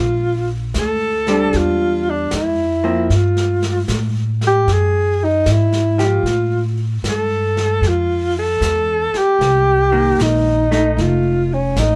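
A relaxed swing at 76 BPM in 4/4 sets an intimate, wistful jazz mood in this short excerpt cut from a longer piece, tuned slightly high to A4 = 441 Hz. The breathy alto saxophone carries the melody up front with a mellow subtone, soft attacks, vibrato and scooped notes, its solo line bathed in plate reverb. The woody upright bass, plucked pizzicato on steel strings, sits prominently beneath it, and a brushed drum kit with a medium-tuned snare and hi-hat enters at 0.7 seconds, kept low in the mix. At 1.3 seconds a vintage hollow-body electric guitar adds dark, clean, picked accompaniment, playing until 11.7 seconds. The harmony moves from Bb69 through Gsus2, F#sus2 and Fmaj9 to Cm7 and F7, all heard from further back in a booth with a moderate ambience and a short decay.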